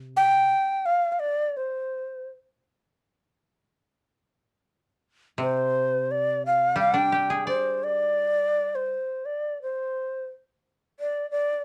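A dark, warm production with light reverb gives this short cut from a longer piece of Japanese chamber music an austere, calm atmosphere. The music moves in a rubato 2/4 at roughly 81-92 BPM, in G in sen with A4 tuned to 438 Hz. An up-front long shakuhachi carries the melody in the C5 to G5 range, its end-blown bamboo tone airy and expressive, with vibrato and tongued notes. The koto plays accompaniment from C3 to D5 at a lower level, plucked with fingerpicks for a dry, woody acoustic sound. It opens the recording at 0.0 seconds, briefly, and returns together with the shakuhachi at 5.4 seconds. The closing section begins at 8.2 seconds, and from 8.9 seconds the shakuhachi carries on alone to the end.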